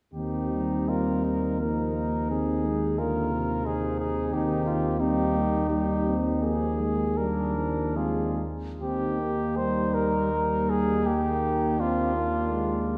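From 0.1 seconds a lyrical, hymn-like classical brass band excerpt in Eb major unfolds in a rubato 3/4 at 67-90 BPM, with a punchy, up-front cornet carrying the melody over a soft-attack flugelhorn second line, a smooth-topped euphonium and a lightly vibrato-tinged trombone in the background, and a mellow, up-front tuba anchoring the bass on a low Eb, all bathed in a wet church reverb as the harmony moves through Eb, Ab and Bb7 over an Eb pedal before a new section begins at 8.8 seconds.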